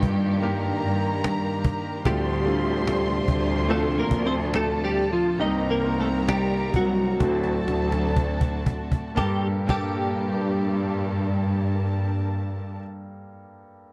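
A bright, twangy clean electric guitar, picked and compressed with an ensemble chorus, carries the melody up front in this melancholic, heartbroken pop ballad in G minor, set in 4/4 with a straight feel at 58-74 BPM. A rich, bowed cello section holds the bass close by, while a symphonic violin section sings a lush second line with a focused, smooth top. Deeper in the mix, a studio string section sustains distant, even chords, and a concert grand piano adds intimate accompaniment with deep bass, long sustain and audible action noise. A woody cajon played with hard hands and faint snares sits up front, and the tempo slows from 2.1 to 9.2 seconds, with a drum fill from 7.2 seconds leading into a new section, after which the cajon stops at 10.0 seconds. The harmony moves from Ebmaj7/G through Dm7, Cm7 and D7 to Gmadd9, all captured in a dry, close 1970s-style studio sound in a passage cut from a longer piece.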